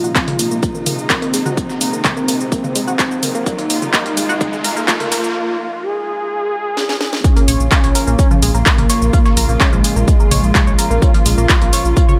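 A heavy, up-front electronic kick and an overdriven house kit with a cracking snare drive this hypnotic, dark melodic techno passage in Bb minor at 127 BPM, alongside a gritty, very quiet sampler-style kit with tambourine, a thick, bold unison lead with digital delay, tight, driving synth arpeggios with chorus and phaser, veiled, muted strings with vintage 12-bit grit in the background, a faint, warbling analog drone and a background riser, as filter sweeps on the lead, arpeggios and strings build through a short break into the drop at 7.2 s, where a round, deep analog bass enters at 7.5 s.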